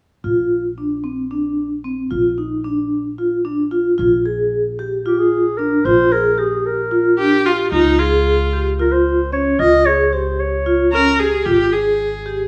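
Contemporary chamber music in a restless yet hopeful 7/8, where up-front vibraphone arpeggios with a fast motor vibrato ring over woody pizzicato upright bass, a mellow classical clarinet carries the melody from 5.1 seconds, and a clear, close bowed viola adds a smooth second line from 7.2 seconds, all set in a small room with light reverb in this excerpt from a longer piece.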